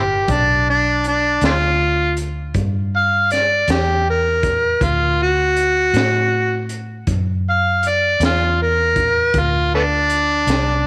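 A slow 12/8 blues rolls along at 53 beats per minute with a straight, laid-back feel, carrying a swaggering mood through this short cut from a longer piece. An amplified, overdriven harmonica takes the solo up front, its gritty tone marked by light vibrato, tongue slaps and scooped notes in a jazz-inflected style. Beneath it, a vintage muted electric bass played with the fingers gives a round, dark, foam-muted low end. A crunchy breakbeat drum kit comes in at 0.3 seconds with hi-hat, a punchy kick and a high-tuned snare, its saturated sound smooth and rolled off at the top. The harmony moves from G7 to Dadd9 at 4.8 seconds, and light reverb places the band in a small room.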